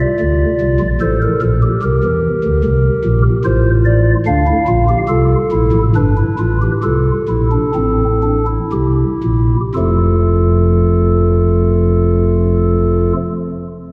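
A soft, hollow chamber organ on a stopped flute stop sits up front and plays alone from 0.0 s, carrying a joyful, elegant baroque-style three-part classical fugue in F major and 3/4 at 57-75 BPM with a straight feel, with chiff on its notes across a range from F1 to F5, easing into a slower pace between 3.0 and 9.7 s before a new section, all heard through a long, wet church reverb in a dark production marked by lossy compression artefacts, in a passage cut from a longer piece.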